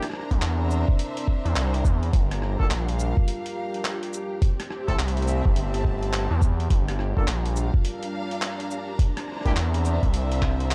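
A thumpy, pitched-down electronic kick sits up front from 0.3 seconds beside a nasal, saturated sawtooth synth bass in this swaggering, gritty glitch hop cut at 105 BPM in G dorian with swung 16ths. Both land over a compressed boom bap sampler-style kit of handclaps, hi-hat, rim click and shaker that plays from the very start, while lush bowed symphonic strings, a moody sub-octave analog pad with chorus and phaser, and smooth background horn stabs with tape echo all pump under sidechain over C9, Gm7 and Am7 chords in a dry, cassette-tape sound.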